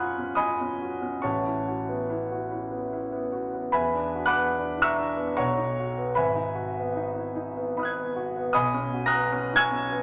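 A clear concert grand piano sits up front in a wet recital hall, its long sustain blooming into a reverb tail of about 1.4 seconds. This is impressionist classical solo piano, hazy and serene, moving at around 74 BPM in 3/4 with uneven beats and a free, rubato feel. The instrument has a natural tone with deep bass, spanning a broad range from G#1 up to A#6. Colorful extended harmonies drift past one another, opening on F#maj7 and passing through A69, E9, Bmaj7 and G#m7 before settling on Bmaj9 at 8.6 seconds. This ten-second passage is cut from a longer piece and plays as a single continuous section.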